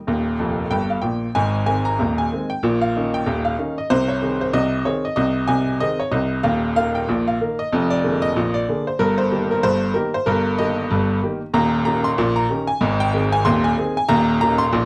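A lilting 2/4 pulse at 94 BPM carries swung sixteenth notes through this cheerful, lively ragtime piano passage in A-flat major, cut from a longer piece. A baby grand piano plays alone for the full 14.9 seconds, ranging from deep bass notes up into the upper treble. Its tone is clear and intimate, with short sustain and the clatter of the action audible, placing the instrument up front in the listener's ear. A brief fill at 0.4 seconds leads into the main strain at 1.4 seconds, where the harmony moves through A-flat, E-flat and B-flat seventh chords before settling on E-flat seventh. Moderate studio reverb frames the piano in a dark, warm production.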